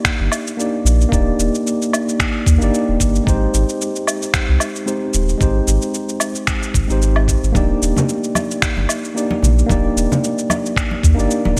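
A relaxed 4/4 groove at 112 BPM opens this smooth sunset chillout excerpt in Eb major, its sixteenths swung at 55%. A thumpy, gritty electronic kick drum anchors the beat, while up-front electronic finger snaps, shaker and woodblock, sampler-style and tape-warm, sit inside a gated reverb. A round, deep analog bass enters at 0.2 seconds with a dark, sustained tone and a filter sweep, and it is the loudest part of the mix. A worn, slightly out-of-tune tine electric piano carries the accompaniment up front with a clean, direct sound and a delay, moving from Ebmaj7 to Abmaj7 and back. Ringing, medium-tuned acoustic congas join at 7.5 seconds in a small room, all within a bright 1980s-style digital production lightly dressed with digital ambience.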